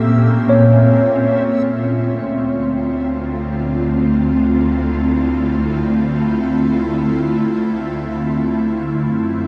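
A melancholic, reflective ambient passage in free time and D minor opens on an ethereal, airy pad holding sustained chords up front, its detuned, chorused tone drifting through a phaser and shimmer reverb. Alongside it, a mellow tine electric piano plays brief arpeggios through tape echo, and a reversed, granular texture glimmers vividly in the background. The harmony starts on Bbmadd9 and moves to Dm7 at 1.7 seconds, when a rich studio cello section enters on the bass line with focused, bowed vibrato and a lush ensemble body. The electric piano falls away early, leaving the pad and cellos to carry the mood, while the dreamy, swelling texture returns only at the very end, at 9.5 seconds. A huge, dark reverb with a long decay surrounds the parts in a wet, cavernous space, and this fragment is clearly cut from a longer piece.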